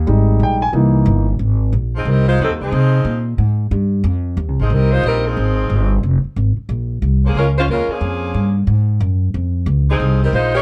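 Brassy and swinging, this short cut from a longer big band jazz piece moves with a swung eighth-note feel in four. A concert grand piano opens the passage with a brief solo moment over a rootless Fm7 and a C7#9, its tone natural and deep in the bass. The upright bass runs from the start to the close, plucked, woody and growly on steel strings, sitting up front in the mix. At 2.0 seconds the saxophone section takes up the melody as a soft-attacked ensemble with light vibrato, touched by plate reverb that gives it a distant, roomy quality. The harmony settles on Fm7, moves to Bbm7 at 6.7 seconds and returns to Fm7, all within a dark, warm production with light reverb.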